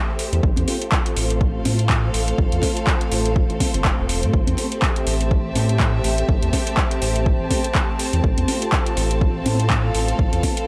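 Deep house with a smooth, late-night mood, cut from a longer piece, where a silky string machine with ensemble chorus holds sustained chords from F/A to Am7 and back while an intimate, lightly vibrato-touched chamber string section adds texture, both pumping against the sidechain along with a round, deep analog bass, while a punchy, overdriven electronic kick sits up front beside a drum kit of handclaps and metallic hi-hats in small room ambience, and bright, high-tuned congas sound in the background under light reverb.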